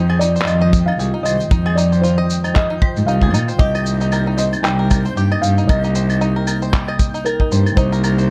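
Dark, vinyl-crackled production wraps this delicate, intimate folktronica excerpt, where a soft, felt-muted upright piano carries the melody through delay over a warbling, nostalgic tape-like pad of sustained chords, twangy banjo arpeggios played with fingerpicks and roughened by vintage 12-bit sampler grit, a close, sul tasto cello bass with light vibrato, and a faint twinkling granular shimmer, while muffled, overdriven electronic claves, shaker and handclaps and a punchy acoustic kick entering at 0.7 seconds supply a swung pulse.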